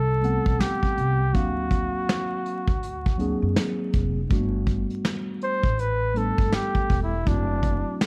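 Cool and relaxed, this jazz-hop excerpt in G major moves at 81 BPM with a swung sixteenth feel, a smooth, vibrato-laden flugelhorn carrying the melody up front and stepping into a solo at 4.3 seconds as the harmony shifts from Am9 and D7alt to Gmaj9. Beneath it, a woody, thumpy pizzicato upright bass on gut strings anchors the low end while a mellow, clean tine electric piano provides accompaniment, and a vintage brush kit with a punchy kick, medium-tuned snare, hi-hat and a rolled-off top sits close in a small room. Light reverb, vinyl crackle and a dark, warm production give the whole excerpt a dusty, intimate glow.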